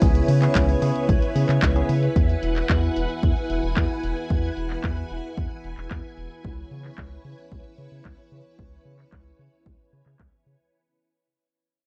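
Italo disco at 112 BPM in a straight 4/4, this short excerpt from a longer piece has a playful, danceable mood. A lush, sawtooth-edged string machine with ensemble chorus holds sustained chords throughout, moving from C#m7 to Eadd9 at 2.2 seconds and back to C#m7 at 6.4 seconds. A bell-like tine electric piano adds bright, clean stabs with subtle chorus and tape echo, playing only until 1.9 seconds. Underneath, a round, deep analog bass with tube saturation sits prominently alongside a punchy electronic kick drum treated with studio reverb. A layered house drum kit supplies handclaps and hi-hats, the hats and snare softened by a low-pass filter, while a filter sweep runs across the drums. The sound is dry and close, in a 1970s studio style, and the whole passage fades out across its length.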